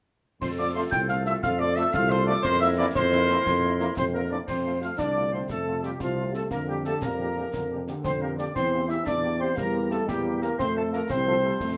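A straight 6/8 lilt at 118 BPM drives this rousing, proud military-style wind band march in F major, where a dark, distant cornet carries the melody beneath a hollow piccolo, a soft-attacked woodwind section and very quiet horns, over an up-front mellow tuba, smooth-topped trombone chords and close, dry snare, clash cymbals and bass drum with dark cymbals, with a clear euphonium joining at 4.0 seconds, all set in a roomy studio reverb in a fragment cut from a longer piece.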